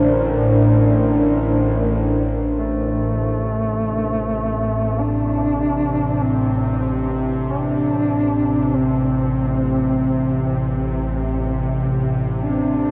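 Dark, ominous ambient in free time and A phrygian, this excerpt from a longer piece opens with a deep, detuned pad washed in chorus over a Bbadd9/A chord. A tense, string-like bowed drone sits underneath for the whole 12.9 seconds, along with a barely audible, metallic bronze singing bowl that rings with slow beating. When the pad stops at 2.6 seconds, the harmony settles on Am7 and a mellow, distant duduk takes the solo melody with vibrato and scooped notes, trailed by delay, all set in a huge, cavernous reverb and a shadowy production.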